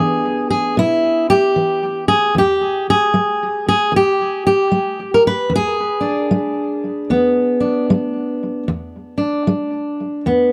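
Rollicking yet laid-back, this 10.5-second cut from a longer acoustic country blues piece swings along at 76 BPM in 4/4 in E mixolydian, carried by a solo fingerpicked steel-string dreadnought guitar on an E7 chord, its dark, woody tone from old strings sitting up front with analog delay inside a lightly reverberant room.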